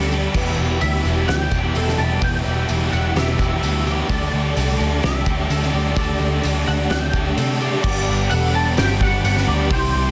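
Shoegaze-tinged rock and dream pop in G major at 128 BPM, this dreamy, hazy excerpt moves from Em to Dsus4 and settles on Gmaj7 at 7.8 seconds. A clean, scooped, twangy electric guitar carries the melody, fingered and wrapped in ensemble chorus and tape echo. Beneath it, a bright twelve-string electric guitar picks compressed arpeggios through lush chorus and tape echo in the background. A vintage string machine of violas holds sustained chords with a warbling, evolving sawtooth tone at very low level. The riffs stack up: a dark, biting overdriven guitar washed in reverse reverb, a raw garage guitar with analog chorus further back, and a very quiet, double-tracked distorted electric guitar that plays from 0.3 to 7.8 seconds. A round, foam-muted picked bass sits up front, while a loose indie drum kit with a fat snare, punchy kick and rolled-off top sounds distant and roomy, joined by a jingly, close tambourine in a small room under a dense, heavily limited modern master.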